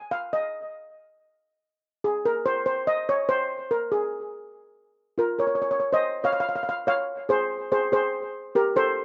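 Calypso at 143 BPM in 4/4 with a straight feel, this bouncy, festive excerpt in Ab major is cut from a longer piece and features a solo steel pan, specifically a double seconds played with medium rubber sticks. The pan carries everything for its full 9.0 seconds, ranging from F4 to Ab5 with a metallic, shimmering tone set up front and given a slapback echo plus a boxy small-room character. The opening passage begins unaccompanied by any chord, with harmony arriving at 3.9 seconds on a rootless Fmadd11. A new section starts at 5.6 seconds on Dbmaj7 and resolves to Ab at 7.3 seconds. The recording was made outdoors with light reverb and a soft, rolled-off top end, keeping the pan's brightness gently rounded.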